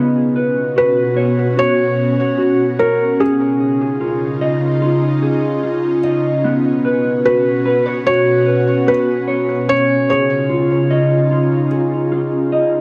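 Floating and dreamy, this dream pop excerpt drifts at 74 BPM in B lydian over alternating Bsus2 and C#add9 chords, with an ethereal, detuned pad holding sustained chords through ensemble chorus and a clean, dark electric guitar tracing arpeggios through subtle chorus and tape echo, while a felt-muted upright piano, intimate with audible action noise, carries a soft melody with tape echo from 0.8 to 11.7 seconds, all set in a moderate plate reverb.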